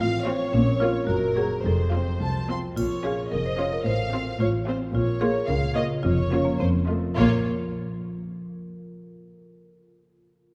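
A woody, dark marimba carries the melody of this playful, sneaky cinematic cue, joined by a lush bowed violin section on a second line, a softer, higher violin melody from 0.3 s, a rich viola section, smooth cello and double bass sections on the bass, ringing thumb-plucked harp arpeggios that continue until 8.3 s, and a brief close, dry triangle at 2.8 s, within a wet concert hall reverb.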